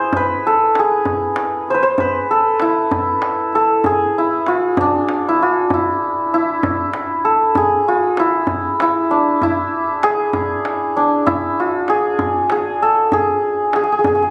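A shimmering, ringing santur opens this festive, stately Persian modal piece in E dastgah homayun, playing the melody up front at a slow 65 BPM in a straight 6/8 while a deep, close and dry tombak keeps time beneath it, all captured on a phone in a reverberant concert hall in a passage cut from a longer performance.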